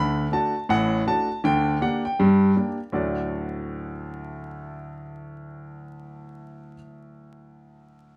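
A layer of vinyl crackle and a wet studio reverb surround this short stride piano excerpt, cut from a longer piece. A lone grand piano carries everything, heard up front with an intimate, natural tone and audible action noise from the instrument itself. The mood is exuberant and swinging, with a light swing on the eighth notes in 4/4 and the playing ranging from the low bass register up into the upper treble. The harmony opens on D, moves to G minor over a D bass at 1.4 seconds, and returns to D at 2.9 seconds as a new section begins. The piano plays alone from the start to 8.2 seconds.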